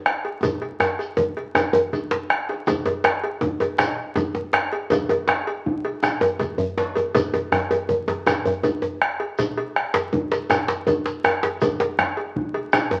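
This excerpt sounds like a very old 78 rpm record, with vinyl crackle over a wet, large studio reverb that rings for about 0.9 seconds. It is a powerful, festive West African drum ensemble in a traditional style, moving at 107 BPM in dotted quarters in 12/8 with a straight feel. Up front sit a round bombo and a tight, cracking djembe with metal rattles. A second djembe, deep and warm in a live room, fills out the sound, while a metallic cowbell sounds close and dry. A grainy, mellow shekere sits further back in a small room. The ensemble starts together within the first half second, and a drum fill runs from 0.4 to 2.7 seconds before the groove settles into its second section, carrying on until the cut at 13.0 seconds.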